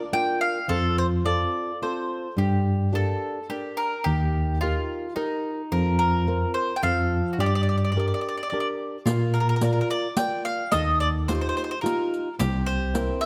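A light reverb gives this lively excerpt of an Italian folk serenade a sunny, open sound. It moves at 108 BPM in a straight 3/4, in Bb major, with the chords cycling through Bb, F, Gm and Eb before closing on C7. The picked mandolin carries the melody with a round, double-string tone placed up front; it plays a brief phrase from 0.1 seconds, then returns at 6.0 seconds to the end. Beneath it, a bowl-back mandolin picks a bright second line, and a boxy, fingerpicked flamenco guitar supplies the accompaniment, with finger squeaks audible on its strings. The bass comes from a worn, slightly out-of-tune tine electric piano, lightly overdriven through a combo amp with a fast tremolo, and it sits prominently in the mix. At 9.1 seconds a close, dry riq enters, adding jingly percussion to the final bars.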